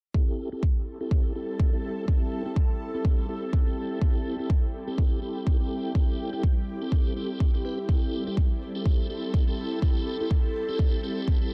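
Afro house at 124 BPM in A minor, this short excerpt cut from a longer piece feels warm and driving, with a 57% swing on the sixteenths giving the groove a loose sway. A deep, layered electronic kick sits up front from 0.1 seconds, while a barely audible cabasa ticks along underneath. Tonewheel organ stabs in a piping, scooped voice carry key click, chorus vibrato and a fast rotary speaker, passed through a low-pass filter and analog delay, with a filter sweep running across the whole passage. An ethereal, airy pad of detuned sawtooth and triangle tones enters at 0.8 seconds, holding sustained chords over an Am7 with a slow attack, long release, ensemble chorus, phaser and its own built-in reverb, and both the organ and pad pump against the kick. The mix is dry in room sound yet heavy with echo, placing the kick well ahead of the softer melodic layers.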